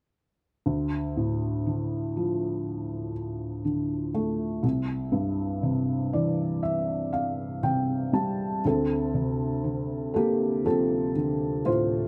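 A felt-muted upright piano enters at 0.7 seconds, soft and intimate, its mechanism adding audible action noise close to the ear. This reflective, melancholic folk piece is carried by the piano alone, moving slowly in a straight four-beat pulse across a span from C2 up to A5. The harmony settles on a D minor chord, shifts to C at 4.6 seconds, and a brief piano fill arrives at 5.6 seconds. A new passage begins at 8.6 seconds on a Dm7 chord, and the piano plays on until 12.1 seconds. The mellow, boxy tone sits up front within a light reverb, giving this short fragment of a longer piece a dark, private character.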